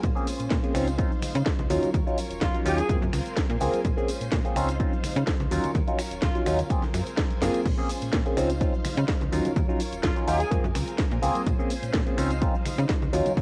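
A punchy, overdriven kick and a lightly swung house kit with cracking snare, hats, snaps, shaker and crash drive this funky, nostalgic filtered disco house excerpt, with a drum fill at 7.4 seconds, as a snappy, metallic FM slap bass pumps underneath, a barky tine electric piano sits up front over lush phased string-machine chords, a quiet, bright clean guitar picks a riff, tambourine and congas ring in the background, and a distant, roomy horn section adds brief vibrato melodic phrases with analog delay, all wrapped in a cassette home-recording haze.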